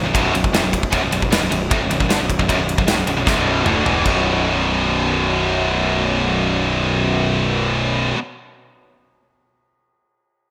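A straight 4/4 pulse at 154 BPM drives this dark, epic heavy metal piece in B minor, where a punchy, up-front rock kit with china and ride cymbals, toms, kick and a medium-tuned snare bathed in gated reverb plays until a fill from 3.3 to 4.1 s, as an up-front high-gain guitar riff rings out, a distorted electric guitar and a double-tracked high-gain guitar sit behind it, and a fuzzy, overdriven picked bass fills the low end, the whole mix set in moderate plate reverb with bright 1980s-style digital production.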